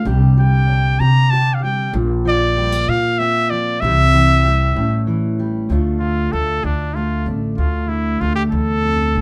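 A bright trumpet with light vibrato carries the melody up front in a classical style, taking a solo from 5.7 to 9.2 seconds as the music settles into D minor. Beneath it, a full-bodied jumbo steel-string acoustic guitar is fingerpicked through Csus2, Bbsus2, C and A5 chords, while a woody pizzicato upright bass anchors the low end. This haunting, intimate acoustic folk passage, cut from a longer piece, moves at 64 BPM in a straight 6/8 and sits in light reverb.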